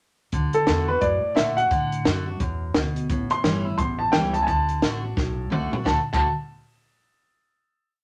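A country two groove swings along at a quick 174 BPM on a compact cocktail drum kit, with a punchy kick, high-tuned snare and dark cymbals sounding dry and up front, while a thumpy gut-string upright bass walks pizzicato and a full-bodied, freshly strung steel-string acoustic guitar alternates bass notes and strums, adding bass runs. From 0.5 seconds an intimate upright piano with audible action noise sits up front, playing a returning lick-based theme over a simple D major, A7, D progression in this retro, rollicking rockabilly piece. A drum fill at 5.2 seconds leads into a final chord at 5.9 seconds, all set in a moderate studio reverb.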